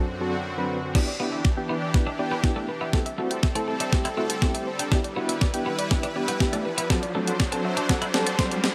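This driving, confident dance-pop excerpt at 121 BPM opens with a faint horn-like synth lead over soft, round electric-piano-like keys with chorus, tremolo and sidechain pumping and a lush, detuned supersaw pad; after a brief silent gap, an overdriven, thumpy 8-bit drum machine enters up front at 0.9 s with a fill that runs through the build-up, joined by a mellow pluck playing arpeggios through tape echo and a clean, compressed twelve-string electric guitar riff in the background. As the harmony moves through Em7, Am7, G6 and D7/F#, a riser enters at 3.4 s and a keys fill closes the excerpt, all in light reverb.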